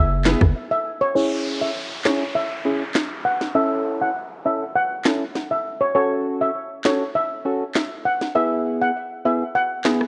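A steel pan melody and a punchy, heavy 808-style bass open this sultry, bouncy dancehall excerpt in C# minor at 100 BPM, with the bass dropping out after just 0.5 seconds. The shimmering steel pan, played with medium rubber sticks and softened by a low-pass filter and digital delay, sits up front over an electronic island pop kit of tight kick, sharp snare, hi-hat, handclaps and rim click. A hollow, dark organ stab with a wave-folded, chorused edge fills in the accompaniment, while a short break gives way at 1.2 seconds to a filter sweep that runs to the end. Over this stretch the chords move from E through C#m, A and F#m back to E, and a faint electronic downlifter passes beneath the groove. The kick drops out at 8.4 seconds, and the whole recording carries a worn, warbling cassette-tape character with pitch drift, dulled highs and a light small-room reverb.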